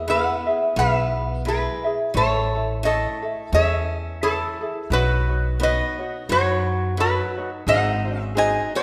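Swung eighth notes in an easy 4/4 give this short Hawaiian fragment a relaxed, dreamy lilt under a sunny glow. A metal-body resonator slide guitar carries the melody up front, its fingerpicked slide tone metallic and nasal. Beneath it, a picked acoustic guitar plays a boxy swing-style second line, while a light, fingerpicked ukulele supplies bright accompaniment. An up-front upright bass, plucked on gut strings, adds a woody, thumpy, dark foundation and drops out at 8.6 seconds, just before the others end at 8.8. The harmony moves from E through Amaj7 and Badd9 to G#7, and a wet scoring-stage reverb lends the whole cut a spacious sheen.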